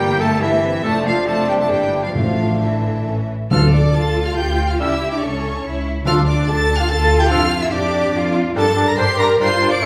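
Wet recital-hall reverb surrounds this stormy, dramatic classical-period orchestral movement in D minor, moving at a quick 142 BPM in 3/4 with rubato, where a rich, smooth violin section carries the high melody over intense second violins, a pure flute ensemble, a clear clarinet and a present bassoon, a focused viola section, mellow sustained French horn chords, distant cellos and expressive, close double basses, while hard-mallet timpani strike from 2.2 to 6.6 s and a very quiet, roomy oboe joins at 3.5 s.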